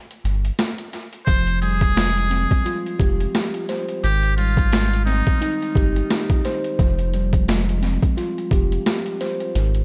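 Moody and tough, this boom-bap hip-hop cut in F minor rides an 87 BPM groove with swung 16ths, its gritty, pitched-down sampler drums (thumpy kick, high-tuned snare, overdrive and dub echo) and a deep, round sub bass entering together from the top, with the drums opening on a short break. At 1.3 seconds a mellow tine electric piano with a cassette-tape tint enters on Fmadd9 and Abmaj7 chords, joined by a brilliant, buzzy metal-muted trumpet playing a jazz-style solo with light vibrato that drops out at 5.6 seconds. Reverb is sparse and the mix leans heavily on echo, with the drums and bass up front.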